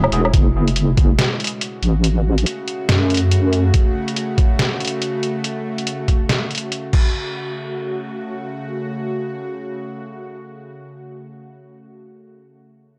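A dark wobble bass with a chorused, detuned edge sits up front in this heavy, meditative deep dubstep excerpt, holding until 3.7 s over a half-time, swung groove. Gritty, pitched-down sampler-style drums, a thumpy kick plus crash, hi-hat, medium-tuned snare and woodblock, hit compressed and close before stopping at 7.0 s. Beneath them a tense, string-like bowed drone of sustained chords, with slow attack, vibrato, ring modulation and its own reverb, carries on alone to 10.9 s in a lightly reverberant space.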